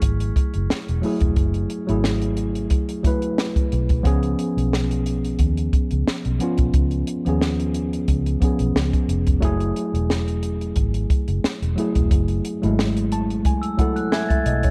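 A worn, slightly out-of-tune tine electric piano, a round, foam-muted fingered electric bass and a punchy, dry compact cocktail drum kit with a high-tuned snare open together on a bittersweet, cinematic 1970s-style soul groove at 89 BPM with lightly swung 16ths in F# dorian, moving from F#m9 to C#7 and back; the piano plays a fill from 12.8 seconds and a soft, bell-like glockenspiel played with rubber mallets enters at 13.6 seconds, inside a dark, small-room production.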